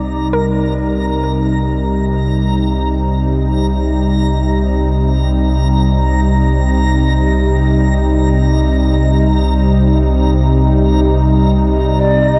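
Ambient in free time, this reflective, spacious excerpt is cut from a longer piece and rests on a single Cm7 chord held by an up-front analog pad, smooth, detuned and warbling with chorus, over a deep, ominous drone that fades in, while a bright, reversed granular texture also fades in high above. A soft, round pluck plays gentle arpeggios in the background with tape echo until 5.7 s. At 12.0 s a breathy, mellow shakuhachi enters with a melody, all set in a huge reverb and a dark production.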